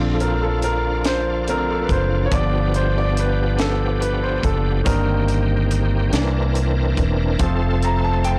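The clear baby grand piano takes the solo throughout this short, jubilant and reverent slow gospel excerpt in Bb major, its intimate, natural tone carrying audible action noise as it moves through Bbmaj7, G7, Cm7/G and C9 before landing on F. Beneath it, a bright tonewheel organ holds full, shouting sustained chords through a slow rotary speaker with light overdrive and chorus vibrato, while a round, dark fingered electric bass sits up front. A tight funk drum kit with a high-tuned snare joins at 0.2 s, playing in the 47 BPM 6/8 feel in a small room with light reverb, and the whole recording has a blown-out, overdriven character.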